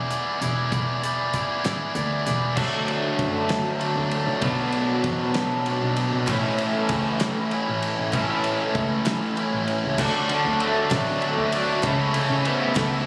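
A biting overdriven guitar drives this carefree, jangly indie rock clip from the very start, its bright, picked riff sitting up front over a slow 6/8 sway at 65 BPM. A clear double bass, bowed by a single player with vibrato, sounds focused but distant beneath it, while a cloth-damped drum kit gives a thuddy, small-room pulse with a fat snare, tight kick and dark, rolled-off cymbals. At 2.6 seconds a raw garage guitar joins with its own picked riff, its overdrive colored by analog chorus. Crisp, close group handclaps add a very quiet human touch from 6.3 seconds. At 10.0 seconds a vintage, buzzy combo organ slips in with faint, overdriven sustained chords, as the harmony moves from E7 through D, Bm, A and back to D before landing on Aadd9/C#. The sound is dry and compressed, with the immediate, roomy character of a phone recording, and the clip is cut from a longer piece.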